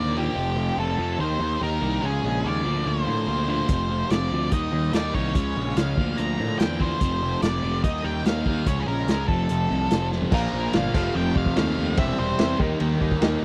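A muffled, punchy vintage drum kit sits up front from 3.7 seconds with dark cymbals and a rolled-off top, next to a fuzzy, overdriven picked electric bass, driving this sunny, swaggering classic rock excerpt at 145 BPM in a straight 4/4. A dark, distorted octave-fuzz lead guitar carries the melody over background riffs from a bright, overdriven stack guitar with phaser and a sludgy distorted guitar, moving through F, Eb, Db and Bb/D. After a drum fill at 10.1 seconds, a brilliant, woody upright piano with short sustain and a biting, double-tracked overdriven guitar join at 10.3 seconds, all in a dry, close 1970s-style studio sound.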